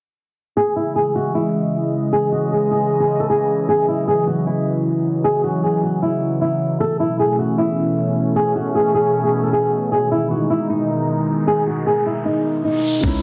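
Hip hop and trap at 154 BPM in a half-time 4/4 feel, this eerie, hard-hitting C# minor excerpt opens at 0.6 seconds with a fingerpicked flamenco guitar melody, finger squeaks audible, over a bright, detuned sawtooth pad with chorus, both up front and moving through C#madd9, Aadd9 and G#m under a filter sweep. An electronic riser enters at 11.1 seconds, and at 13.0 seconds the track lands on a brief hit from a soft, felt-muted upright piano, a punchy sine-based 808 bass on C#2, and the crash and knocking kick of a trap kit. A lush hall reverb and a dense, heavily limited modern master shape the sound.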